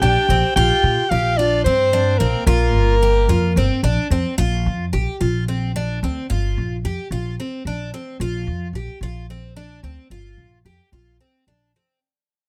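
A breathy soprano saxophone carries the melody up front over a quieter alto saxophone second line, a shimmering, octave-doubled twelve-string acoustic guitar picking arpeggios and a woody, thumpy pizzicato upright bass in this driving, intricate progressive instrumental in 7/8, cut from a longer piece, where both saxophones stop at 3.8 seconds and the guitar and bass carry on through a fade-out from 4.4 seconds, all caught by close, detailed microphones in a nearly dry room.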